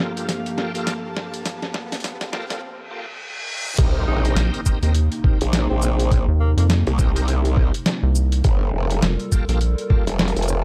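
Up front, a growling, wobbling bass with tube saturation drops in at 3.8 s alongside a thumpy, pitched-down kick, joined shortly after by a rubbery square bass, driving this swaggering, playful glitch hop excerpt at 103 BPM in C dorian. A gritty boom bap kit, a shouting tonewheel organ with slow rotary speaker and dub echo, a warbling lo-fi pad, a breathy pad that drops out at 2.6 s, and very quiet risers and impacts fill out a build-up over Gm9 that drops onto Cm7, where a distant jazz tenor saxophone enters.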